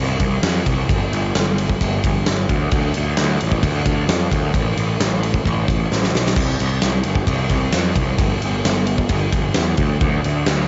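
A dry, dulled cassette home recording captures a brooding, cathartic stretch of quiet-loud alternative rock cut from a longer piece, where a growly, overdriven, bright fuzz bass played with a pick sits up front beside a huge, natural big-room acoustic drum kit with a punchy kick, medium-tuned snare and crash, ride and splash cymbals carrying its own cassette-tape grain, and a drum fill breaks in at 5.9 seconds.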